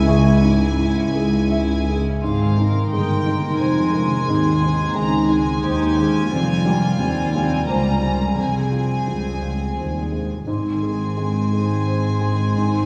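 A tender, uplifting cinematic passage in a rubato 3/4 opens with a clear violin section carrying the melody over a rich second violin line, a soft felt-muted upright piano with audible action noise, floating violas, very quiet ringing harp arpeggios, dark cello and double bass sections holding the bass, and a distant, mellow French horn section whose sustained chords stop by 1.9 s, while from 0.1 s a background clarinet and a hollow silver flute add second lines, the whole heard from further back in a wet scoring-stage reverb.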